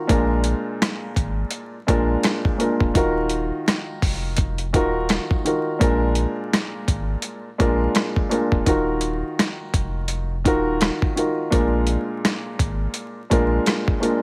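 A dark, woody upright piano opens this tough, reflective boom-bap hip-hop excerpt at 84 BPM in Eb harmonic minor, filtered and up front as it moves between Bb7 and Ebmadd9 over a round, sine-toned sub bass and a gritty, compressed, overdriven soul sampler-style kit of thumpy kick, medium-tuned snare, rim click and hi-hat swinging on 16ths, with light reverb and vinyl crackle.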